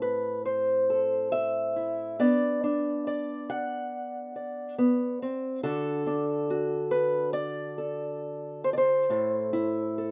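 A single fingerpicked acoustic archtop guitar sits up front in light reverb, its warm tone carrying a haunting, melancholic folk piece in A dorian at a rubato 69 BPM in 4/4, moving from Am through Bm and D to settle on an A5 near 9.1 seconds in this brief 10-second cut from a longer work.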